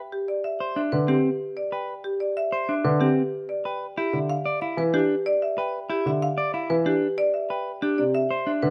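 A woody, percussive marimba struck with hard mallets carries the melody from 0.1 seconds in this fragment of classical minimalist pattern music. The music is urgent yet meditative, moving at 187 BPM in 6/4 with a straight feel. A clean, picked electric guitar joins with arpeggios at 0.6 seconds, and a mellow baby grand piano adds low accompaniment from 0.9 seconds, all three sitting up front in light reverb over a harmony that opens on Cmaj7 and settles on C.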